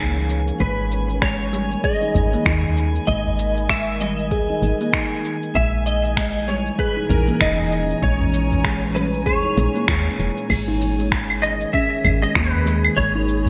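Hypnotic and earthy, this organic downtempo excerpt moves at 97 BPM in 4/4 with a gentle 16th-note swing, set in G# minor and shifting between A#dim and G#m chords. A woody, round FM bass and a plucked, hollow-box kalimba playing thumb-plucked, ringing arpeggios with delay anchor the groove. Behind them sit an ethereal, airy pad with sidechain pumping and a glassy texture of drifting overtones, both carrying shimmer reverb. A clean, dark lap steel guitar enters at 0.6 s with a compressed, slide-fingered melody through ensemble chorus and delay. Up-front afro-pop drums with cabasa, claves, snaps and crash under gated reverb are soon joined by a deep electronic kick, while a small acoustic udu comes and goes in the background. The band hits an accent at 9.9 s before a new section begins at 10.5 s, all wrapped in a moderate plate reverb and bright 1980s-style digital production.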